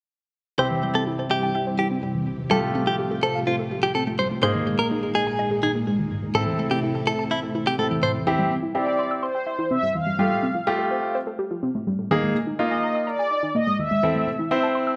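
Pop at 125 BPM in C major with a nostalgic, wistful air, this excerpt sets a clear, polished baby grand piano and a warbling, lo-fi dusty pluck arpeggio over a C–Fadd9–Absus2–Am progression, joined at first by a full-bodied string-machine cello pad with ensemble chorus and a compressed, direct-recorded clean electric guitar line with harmonic tremolo and tape echo until about 8 seconds, after which a round, brassy synth brass melody with chorus and tape echo takes over from 8.7 seconds, all bathed in a wet recital-hall reverb.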